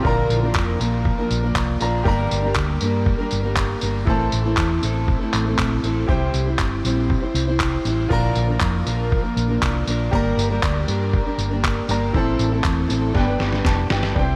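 Carefree and sunny, this 14-second acoustic pop excerpt at 119 BPM sets a double-tracked fingerpicked steel-string acoustic guitar with a full-bodied jumbo tone over a round, punchy hollow-body electric bass and a muffled, pitched-down lo-fi sampler drum kit with thumpy kick and tambourine, while a clear grand piano with audible action noise rings out, very quiet crisp group handclaps join from 0.5 seconds, a dreamy, reverb-soaked mix glows across Bb, Gm, Am and C, and a drum fill from 13.2 seconds and a piano fill from 13.4 seconds close it.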